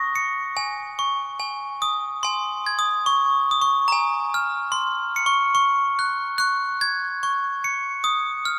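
Innocent and gentle, this short passage from a longer children's lullaby in Db major drifts along at 73 BPM in a straight 3/4, carried entirely by a solo glockenspiel struck with brass mallets whose bright, bell-like, sparkling tones sit up front and ring out into the long, wet reverb of a cathedral-like hall, moving through chords such as Dbadd9 and Gbsus2 before arriving at Ebsus2 near 8.0 seconds.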